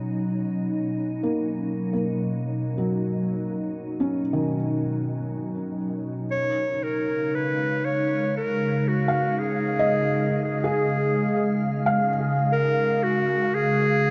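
A classical-style solo clarinet carries the melody from 6.3 seconds, fading in up front over this peaceful, warm ambient passage at 58 BPM in 3/4, cut from a longer piece. Beneath it, a glassy, ethereal FM pad holds full-bodied sustained chords from the start with slow attack and long release, shaded by ensemble chorus, phaser and its own reverb, moving from Bmaj7 to C#. A soft, felt-muted upright piano joins at 1.2 seconds with intimate arpeggios in diffuse delay, all set in a huge reverberant space over a faint mains hum.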